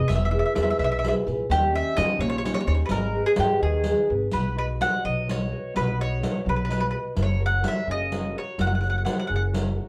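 A round, double-strung mandolin carries the melody up front in this passionate, romantic Italian folk serenade, a fragment in a rubato 6/8. Beneath it, a classical nylon-string guitar with fresh strings is thumb-plucked in warm accompaniment, while a woody, thumpy upright bass with gut strings plays pizzicato up close and a distant riq adds dark jingles under soft hands. The harmony shifts into a brighter second section at 4.3 seconds, and the whole ensemble sits back in a wet studio reverb.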